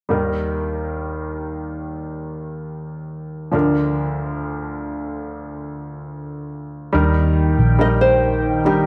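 Set in a moderate echo-chamber reverb with small-room ambience, this tender, heartfelt pop excerpt opens on a clear, natural concert grand piano, up front with deep bass and short sustain, carrying the accompaniment alone over an Eb to Bb/D movement. At 6.9 seconds a shimmering, retro chorused pulse-width pad enters with slow attack and long release, joined by a round, dark, foam-muted vintage electric bass placed up front. At 7.8 seconds a small, fingerpicked nylon-string guitar adds a brief melody through tape echo.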